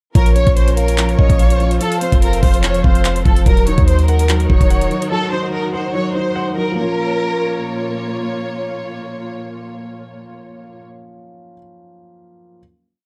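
A half-time trap beat at 145 BPM drives this dark, brooding hip hop piece in Bb harmonic minor, with an up-front kit of knocking kick, metallic sixteenth-note hats with fast rolls and handclaps, and a deep, boomy 808 bass holding long sub notes that follow the kick until 4.9 seconds. Over a Bbm–F–Ebm hook, a distant violin section plays a looping melody with vibrato and delay, while a mellow vintage baby grand repeats an eighth-note arpeggio and a woody string section sustains lush chords. A soft, breathy flute-like synth adds a sparse chorused counter-melody in the background until 3.0 seconds, and after the beat drops out the piano and strings hold a final Bbm chord from 6.8 seconds in a small, dusky room.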